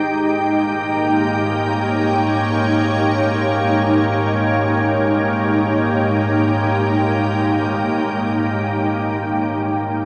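This ambient excerpt opens at once on a soft, organ-like pad playing alone in free time, its tone pure and calm with a gently detuned, evolving shimmer built from triangle and sine colours over a sub octave. The pad spans Ab2 to G5 and sits up front and bright, its slow attack and long release letting a single Eb7/Ab chord, arriving at 0.1 seconds, hang in the air. An ensemble chorus thickens the sound, while built-in reverb and a diffuse ambient delay blur its edges. The whole excerpt sits in a huge, wet ambient space with a reverb tail of 8.2 seconds, giving the serene, luminous mood a sense of vast space. The pad sustains until 10.1 seconds, a brief moment cut from a longer piece.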